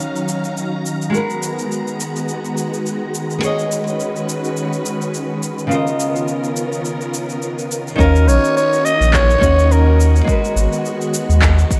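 A bright, 1980s-style digital production with a moderate plate reverb frames this wistful sunset chillout excerpt in Eb minor at 105 BPM, its 16ths lightly swung. Fingerpicked flamenco guitar with audible finger squeak, delay and shimmer reverb plays alongside a silky, vintage string machine holding slow-attack chorused chords over overdriven electronic shaker and handclaps, moving through Ebm9, Abm9, B69 and Db13. At 8.0 s a deep, round sine sub bass and an overdriven electronic kick drum enter, and a breathy, gritty soprano saxophone growls a short, up-front melody with vibrato until 10.2 s.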